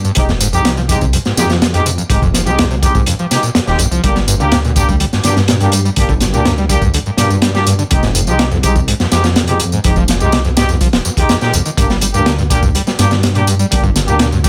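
Driven by a crunchy, up-front breakbeat kit at 124 BPM in straight 4/4 with a punchy kick, medium-tuned snare and hi-hat, this funky, gritty breaks excerpt layers an overdriven tambourine, a deep, rumbling detuned saw bass, a squelchy, screaming acid riff with distortion, subtle chorus and tape echo, and vintage brass stabs carrying 12-bit sampler grit over Fm7 and Gm chords, all in light reverb.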